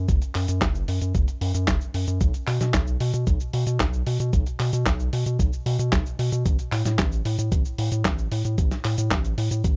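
A straight 4/4 pulse at 113 BPM drives this italo disco excerpt, built on a thumpy electronic kick and a dusty soul sampler-style kit of cabasa, handclaps, hi-hat and medium-tuned snare, both compressed, gritty and tape-warm, as if re-recorded in a large room. Up front sits a round, deep analog bass with a fast attack and a sustained, dark tone blending triangle and sine colours, moving between F#1 and B2. The mood is nostalgic and melodramatic, set in a dry, close 1970s-style studio sound with little reverb.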